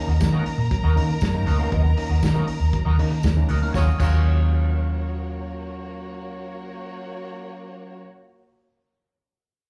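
A straight 4/4 disco groove at 118 BPM drives this short, glamorous cut from a longer piece in Eb minor, with a muffled, lo-fi vintage drum kit of tight kick, medium-tuned snare, hi-hat and crash cymbal alongside a jingly tambourine tucked in the background. Up front, a dark, round, foam-muted fingered electric bass carries the low end with punch, and it is the loudest part. A gritty, barky overdriven tine electric piano and a clean, twangy electric guitar with wah fill the accompaniment, both touched with slapback echo. Above them, a lush, distant studio violin section plays a second line with expressive vibrato, also carrying slapback echo. The harmony moves from Bmaj7 to Ebm7 at 3.7 s, and the drums and tambourine drop out at 4.1 s, leaving bass, keys, guitar and strings to drive on. The whole mix sounds like a live gig heard through a venue's PA, with small-room ambience and club reverb.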